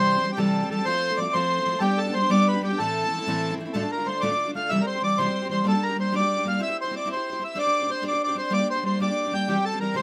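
In a straight 6/8 jig at 126 BPM, this wild, spirited Celtic folk piece in A minor sets a reedy, rich, mid-forward accordion melody up front over a picked steel-string acoustic guitar with fresh strings and an auditorium tone, the chords moving through C, F, G and Am before a later passage turns to Dm, Gm and Csus2, all within a light reverb.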